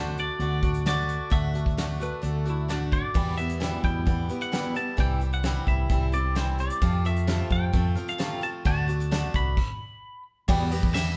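A moderate stone-room reverb wraps this live, one-room band take, a jangly, nostalgic folk and heartland rock excerpt moving at 131 BPM in a straight 4/4 through D, Em, C and F. A bright, clean, compressed twangy electric guitar carries the melody with a warbly pitch drift over a boxy, picked swing-style acoustic guitar, a dark, round hollow-body short-scale bass sitting up front, and an airy, polished brush kit with a fat snare and tight kick. A pedal steel slips in around 2.0 s with fingerpicked slide phrases and volume swells, the band stops at 9.6 s, and a very quiet, jingly tambourine joins at 10.5 s.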